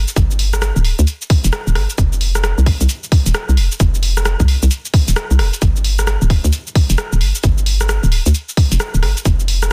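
A hollow, knocking FM bass with a bouncy, fast-attack sound and sidechain pumping sits up front in this soulful, skippy two-step UK garage excerpt at 132 BPM with a 64% swing on the sixteenths, joined by a tight, tape-warm layered electronic kick re-recorded in a large room and a punchy analog drum machine playing hi-hat, rim click, shaker and a soft-clipped snare, all in a dry, dense, heavily limited modern master.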